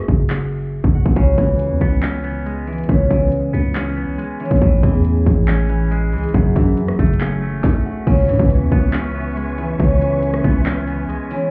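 A ringing concert harp melody with delay opens this melancholic, eerie half-time trap piece, joined almost at once by an up-front, overdriven drum kit with a hard-clipped kick, sharp snare and bright hats, and by a growling, buzzy 808-style bass, while a clean, twangy electric guitar enters at 1.2 seconds and a lush, bowed string section adds soft sustained chords from 8.1 seconds, the whole mix sounding muffled as if heard through a wall, with club reverb.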